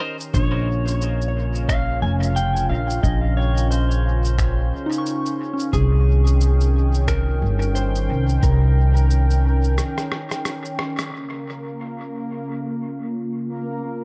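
A woody, growly upright bass sits up front in this meditative, deep ambient dub fragment at 89 BPM in Bb dorian, joined by a muffled, thumpy kick, pitched-down cabasa, finger snaps and rim click treated with dub echo, a slightly broken-up electric slide guitar melody also carrying dub echo, a gentle FM synth bell arpeggio in the background, and a detuned sawtooth analog pad with chorus that takes a filter sweep from 11.1 seconds as the drums stop and a resonant, bubbling stepped-filter texture with its own reverb rises up front at 11.3 seconds.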